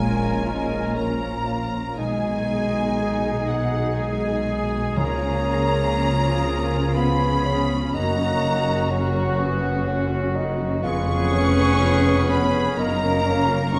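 Classical orchestral excerpt, warm and serene, in a slow, rubato 3/4, where a rich, distant violin section carries the melody alongside an airy flute and a second, background violin line, with expressive viola portamento, a solo bassoon, mellow horns and quiet, clear trombones holding sustained chords, ringing harp arpeggios, distant trumpet stabs, lush cello and double bass below, and a round, soft-mallet timpani touch at 5.0 seconds, all set in a wet recital-hall reverb with a dark, warm production.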